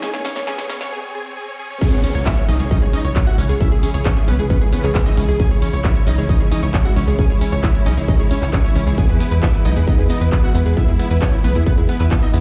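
A distorted, layered electronic kick sits up front from 1.8 seconds, driving this euphoric uplifting trance excerpt in C# minor at 134 BPM alongside a tight, sawtooth-and-square sequencer bass with tube saturation and sidechain pumping, after a short build-up with a drum fill, a filter sweep on the supersaw and a brief break before the drop. Huge, detuned supersaw chords carry the melody through sidechain pumping and digital delay, over dark, bowed symphonic strings and two round analog pluck parts, one weaving arpeggios through chorus and dub echo and the other a quieter second line. A punchy, tape-tinged analog drum machine supplies crash, handclaps, hi-hat and snare, with a grainy cabasa, a riser and downlifter in the background until 5.4 seconds, and the whole mix heard through a big sound system in a bare room with large studio reverb.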